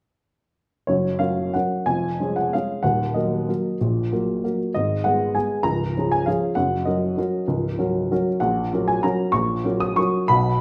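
At 0.9 s a solo upright piano begins a graceful, elegant classical waltz in F# major and 3/4, moving with a rubato feel at a brisk 174-206 BPM. The instrument has a woody, intimate character, slightly detuned and tuned to A4 = 437 Hz, with short sustain and audible action noise that brings the mechanism close to the ear. It spans from C#1 up to D#6 and sits up front, while a wet large-studio reverb with a 0.9 s decay places it further back in the room. The harmony moves from F# through C#/E#, D#m and G#m to C#, then returns to F# before settling on F#/A#. This brief excerpt, taken from a longer piece, ends at 10.6 s.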